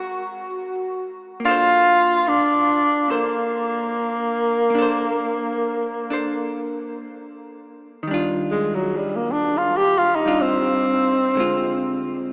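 Swung eighth notes in a slow 4/4 set an intimate, late-night jazz ballad feel in this short cut from a longer piece. A breathy tenor saxophone carries the melody up front, its mellow subtone, vibrato and smooth top giving the line a breathy, intimate quality. Beneath it, an electric hollow-body jazz guitar provides clean, dark, picked accompaniment through rich chords such as Ab9, Bbmaj9 and Ebmaj9. At 8.1 seconds the harmony shifts and the saxophone moves into a solo passage that runs to the close at 12.3 seconds, ending over a Dm7b5 chord. The whole piece sits in a vast, cathedral-like reverb that leaves long echoing tails, while the overall sound has the narrow, boxy character of a small speaker.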